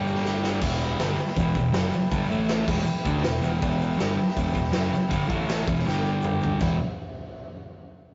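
Gritty and menacing, this short cut of garage rock charges along at 160 BPM in E minor, led by an up-front, double-tracked fuzz guitar riff over a growling, overdriven picked bass sitting in the background. A saturated, punchy drum kit with a medium-tuned snare fills at 0.2 and 5.9 seconds, while a buzzy vintage combo organ holds clean sustained chords with light vibrato and a very quiet, grainy egg shaker adds a bright edge. The rough rehearsal-room sound, with its stone room reverb, tube saturation and dull cassette-tape top end, feels raw and pressing as the chords move between Em, A5, E5 and G5.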